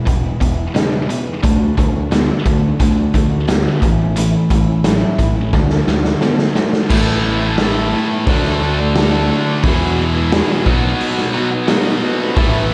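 A picked steel-string acoustic guitar with slapback echo sits in the background beneath a cranked, overdriven stack guitar riff and a tight, distorted second guitar, joined at 0.1 seconds by a growly picked electric bass and a punchy, gritty garage drum kit with a rolled-off top, in a driving, swaggering classic rock excerpt at 88 BPM in straight 4/4. The chords move from E through D and A, and a drum fill at 5.5 seconds leads into a section built on Asus2, D, Eadd9 and B. A round, mellow tonewheel organ with slow rotary speaker enters at 12.1 seconds with sustained chords, all set in a lush hall reverb that gives a big arena sound.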